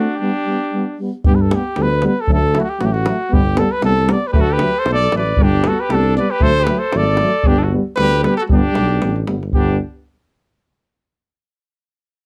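This Balkan folk brass band excerpt in a brisk 2/4 is festive and wild, cut from a longer piece and alternating between two chords. A mellow, close-miked trumpet carries the melody up front with a light vibrato. A second trumpet, clear and smooth at the top, plays a supporting line at first, drops out, then returns at 4.3 seconds. Two euphoniums hold the accompaniment in the background, one dark and close and the other softer and more distant in a roomy space. As a brief opening break draws to a close, a tight davul enters at 1.2 seconds and a punchy tuba follows at 1.3 seconds, anchoring the bass up front. The band plays in a classical style, and a light reverb adds a touch of space.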